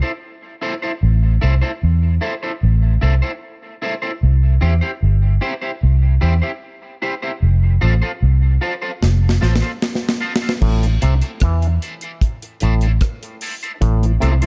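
A straight 4/4 dub reggae groove sets a deep, spacious mood in this short cut from a longer piece, as a twangy, slightly broken-up electric guitar with chorus and dub echo floats over a round, punchy, foam-muted bass that enters at 1.0 seconds, before a dry, up-front acoustic drum kit with a tight kick and medium-tuned snare rolls in with a fill at 9.0 seconds, and a stringy auto-wah clav riff at 10.6 seconds and, just after, a mellow, lightly overdriven tonewheel organ swirling through a slow rotary speaker fill out the reverberant studio space.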